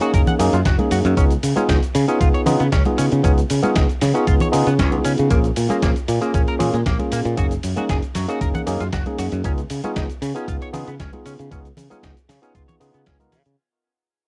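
A home cassette recording with light reverb carries this sunny, groovy nu-disco excerpt at 116 BPM in Db mixolydian, moving through Gb6, Db7 and Bbm7 chords before fading out from 5.3 seconds. Up front, a worn, slightly out-of-tune tine electric piano pumps with sidechain and tape echo beside a growly fingered electric bass, while a twangy, scooped clean electric guitar picks its riff through analog chorus and tape echo. A thumpy electronic kick and a gritty, tape-warm sampler-style soul kit with a medium-tuned snare, hi-hat, ride cymbal and cabasa sound re-recorded in a large room, with dry, hard-handed congas in the background.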